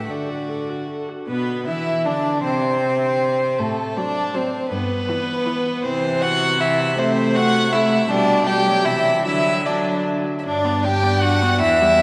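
In a quick 3/4 at 146-164 BPM, with a rubato, flexible pulse, this lively and graceful classical-period movement for string quartet is cut from a longer piece. Each of the four single players bows with light vibrato and a period-style gut-string tone. The first violin sits up front and carries the melody with a warm, reedy voice. The second violin, also up front, adds a rich second line below it. A nasal, more distant viola supplies the accompaniment, and the cello anchors the bass. The harmony moves through D, a brief unharmonized moment and several inverted chords before settling into G major from 5.9 s, then arriving on G at 10.5 s, all bathed in a wet church reverb with a 3.1-second decay.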